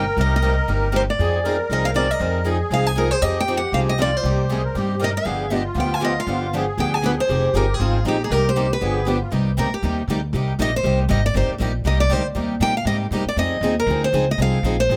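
Acoustic string swing in the jazz manouche style, this fiery, swinging passage in C minor is cut from a longer piece and races along at 236 BPM in 4/4 with a swung eighth-note feel. A picked steel-string acoustic guitar carries the melody up front with plate reverb, its concert tone warm and flecked with finger squeak, and it takes a solo over the second section from 9.3 seconds. Beneath it, a musette accordion adds a reedy, shimmering second line in musette tuning, dark and smooth, until it stops at 9.3 seconds. Two more picked guitars accompany throughout, both bright: a steel-string with fresh strings and a boxy swing-style guitar. The pizzicato upright bass sits prominently with a woody sound as the chords move among Cm7, Fm7 and G7b9. Close, detailed microphones and a light reverb give the recording an intimate presence.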